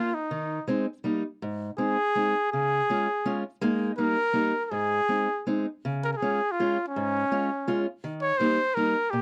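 This alpine folk piece, in the manner of an alpine dance band, has a bouncy, festive mood, moving in three with a light swing and a flexible, rubato feel. A warm trumpet carries the melody up front, played close-miked in a classical style with a light vibrato, sounding like a soloist over its partner. Beneath it, a fingerpicked steel-string parlour guitar supplies the accompaniment, its tone dark and boxy, with the odd finger squeak audible. The harmony circles through simple changes before a second section begins at 5.8 s and brings a fresh tonal centre. The dry, close sound recalls a 1970s studio with only light reverb, and this short cut from a longer piece ends at 9.2 s.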